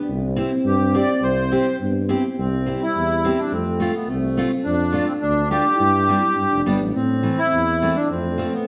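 Soaked in a wet recital-hall reverb, this bouncy, jolly alpine folk dance-band clip in 2/4 puts a reedy, sweet accordion with light tremolo tuning up front on the melody, over a dark euphonium second line, a mellow, close-miked tuba bass with light vibrato, and a picked steel-string acoustic guitar accompaniment with audible finger squeak, moving from C through F and Dm/F to Gsus4, Gadd9 and Am.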